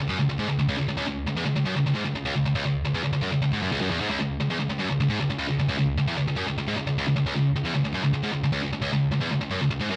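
A bright, distorted electric guitar plays alone from 0.0 to 10.0 seconds, picked and double-tracked with heavy high gain, and sits up front in a low register between C#2 and G#2. This epic, relentless metal passage moves at a straight 153 BPM in 4/4 and C# minor, tuned to A4 = 442 Hz. A light reverb, digital ambience and dark, warm production frame this short passage, which is cut from a longer piece.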